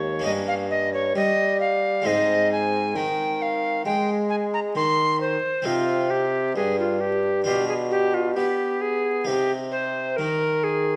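The woody, breathy alto recorder sings up front with vibrato, tongued notes and chiff over a warm bassoon bass with light vibrato and a brilliant, full-bodied harpsichord plucking three sets of strings in this introspective, solemn baroque-style sonata movement at a slow 66 BPM in 4/4. Its 11-second fragment, cut from a longer piece, moves from Eb7/G through Ab and Cm to Bdim7 before settling back on Cm, in a reverberant recital hall with vinyl crackle.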